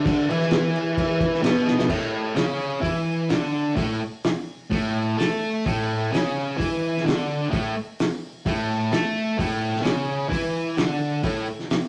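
A fuzz-drenched electric guitar leads this rowdy, swaggering garage rock clip, cut from a longer piece, its picked, double-tracked riff sitting up front with a compressed, distorted bite that ranges from A2 to A4. It opens on a chord-free figure before settling onto A at 1.9 seconds. Close behind, a cloth-damped drum kit thuds along in straight 4/4 with a fat snare, tight kick, hi-hat and dark, muffled crash cymbals, its rolled-off, gritty tone giving it a lo-fi, small-room character. A drum fill at 1.7 seconds kicks the band into the main stretch of the groove. The rough rehearsal-room recording carries a saturated glow and a moderate touch of studio reverb, keeping the whole performance raw and close.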